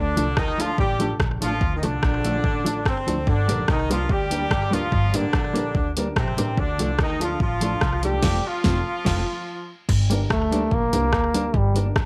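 Ska at 145 BPM in G minor, energetic and mischievous, cut from a longer piece. An up-front horn section with light vibrato and octave doubling carries the loose melody over a woody, growly pizzicato upright bass, a mellow clean electric guitar with tremolo, boxy upright piano stabs in the background, and a layered electronic drum kit with a deep kick, fat snare and slapback echo. After a band accent on F at 8.2 seconds, a clear, smooth-topped trombone takes a short solo from 10.3 seconds over Gm, all in a light studio reverb.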